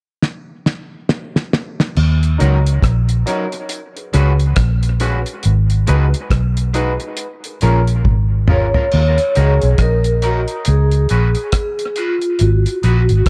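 Deep and spacious, this echo-heavy dub reggae excerpt in Eb minor moves at a swung 69 BPM, as a cloth-damped, thuddy drum kit with a fat snare and dark cymbals opens on a fill before a round, punchy, foam-muted electric bass arrives up front at 2.0 seconds, joined by a slightly broken-up picked electric guitar and mellow dark baby grand piano stabs, both filtered and soaked in tape echo, until a metallic, ringing vibraphone with fast motor vibrato takes the melody at 8.5 seconds and a tight trombone section adds a smooth-topped second line in the background from 9.4 seconds, all within a light, small-room ambience.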